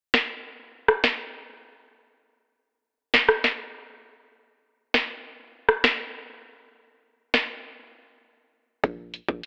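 An electronic afro-pop drum kit with a deep kick, sharp snare, rim click and hi-hats sits up front through cassette-tape grit in this bouncy, tough dancehall cut at 100 BPM, moving into a break at 7.6 seconds before a punchy, tight sine-based 808-style bass with a noisy edge and fast attack lands on a Bb at 8.8 seconds, all wrapped in a moderate spring reverb and a lo-fi home-cassette, telephone-like sound.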